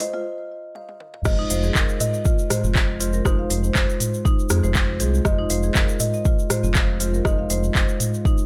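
This driving, hypnotic afro house excerpt in F minor at 120 BPM with a light 16th-note swing opens with a plucked, hollow kalimba melody, woody marimba arpeggios and mellow tine electric piano stabs, all trailed by delay, with the marimba and electric piano pulsing under sidechain pumping, over an up-front afro-pop kit of smooth hats, handclaps, rim clicks, toms and crash, while a drum fill and filter sweep build through a short break until a grainy, bright egg shaker slips in at 1.2 seconds and the drop at 1.3 seconds brings a deep, tape-warm electronic kick and a round, dark, pumping analog bass.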